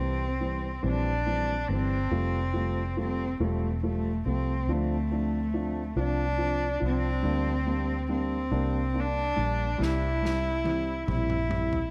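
A bowed cello with light vibrato and an airy sul tasto tone sings a tender, romantic melody up front over dark, mellow grand piano accompaniment with audible action noise and a round, foam-muted electric bass in this six-eight pop ballad excerpt, with tape echo trailing the cello and piano, until a small-room acoustic drum kit slips in at 9.8 seconds for a background fill on snare and toms, all set in light studio reverb.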